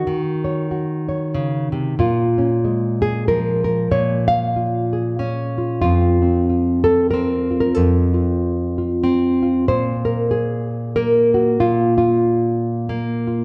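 A dark, intimate sound opens this short cut from a longer folk piece, with a solo nylon-string guitar placed up front in a moderate scoring-stage reverb. The guitar's tone is full-bodied and deep, with a thumb-plucked classical character that suits the wistful mood. Set in Bb minor at 94 BPM in 3/4 with a gentle swing on the eighth notes, the fingerstyle playing spans from F2 up to F5. The harmony moves from Ebm7 to Bbm7 and then to F before a second section begins at 9.7 seconds on a Bbsus2 chord. The whole passage lasts just 13.4 seconds, a brief and reflective glimpse of solo acoustic guitar.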